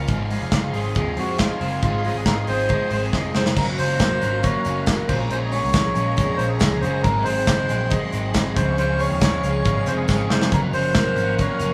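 Wistful and bittersweet, this cut from a longer jangly indie pop piece moves at 138 BPM in a straight 4/4, sounding like a band playing live in one room with a wet studio reverb. A twangy, slightly broken-up electric guitar through a small old amp plays phaser-tinted arpeggios, while a crunchy overdriven guitar adds spring-reverb accompaniment in the background and a shimmering string machine holds soft-attack violin chords with ensemble chorus. Underneath, a vintage foam-muted picked bass sounds dark and round, and a polished modern drum kit sits up front with a tight kick and a medium-tuned snare, adding fills at 3.1 and 10.1 seconds. A reedy, breathy melodica carries the melody from 0.7 seconds, its nasal, wooden-cased tone staying mellow. A jingly tambourine, close and very quiet, joins at 3.6 seconds as the harmony settles into a Gbmaj7, Bbm7, Ab7, Dbmaj7 progression that returns to Gbmaj7.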